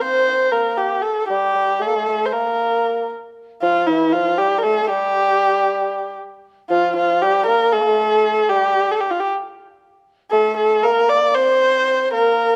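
In free time, this melancholic, longing Turkish makam fragment in G makam huseyni sets a dark, expressive bowed kamancheh up front, singing the melody with vibrato and portamento, over a mellow, vintage-toned bassoon playing a classical-style second line with light vibrato, both sounding throughout the 12.6 seconds in a moderate recital hall reverb, with a new section beginning at 6.7 seconds.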